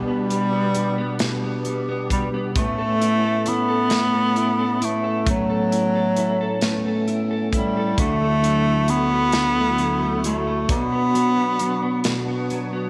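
A bright bass clarinet leads this slow, dramatic and melancholic 6/8 pop ballad at 44 BPM, carrying the jazz-style melody up front with vibrato, scooped notes and a slapback echo, over a clean, compressed, double-tracked electric guitar, a fat, lightly overdriven tonewheel organ with key click, third-harmonic percussion, chorus vibrato and slow rotary speaker, and a very quiet, full-bodied fingerpicked jumbo acoustic guitar playing arpeggios through G/B, Aadd9, Dadd9 and Bm, while a studio drum kit with a punchy kick, medium-tuned snare and hi-hat joins at 0.3 seconds, all under light studio reverb.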